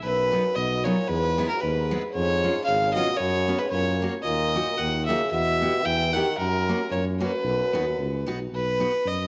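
Alpine folk dance music in a jolly, festive 2/4 at 113 BPM in B major, with a close, nasal, gut-string fiddle carrying the melody up front with a touch of slapback echo, a distant, roomy euphonium with light vibrato singing a second line until 8.2 seconds, a mellow, soft-attack tuba anchoring the bass with a hint of transformer saturation, and a picked dreadnought acoustic guitar with audible finger squeak adding accompaniment from 0.3 seconds, all set in a lush echo-chamber reverb with a rolled-off top end and a brief chord passage that detours through E minor before resolving home.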